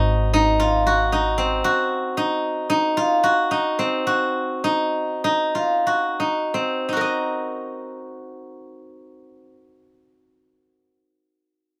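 Hypnotic and pensive, this contemporary chamber excerpt in 9/8 and Eb dorian moves at 170-230 BPM in eighths, with an up-front steel-string zither ringing out silvery fingerpicked arpeggios from 0.0 to 11.1 seconds over a dark, woody pizzicato upright bass that thumps on gut strings until 1.6 seconds, the tempo slowing between 2.2 and 6.9 seconds in a moderate booth ambience.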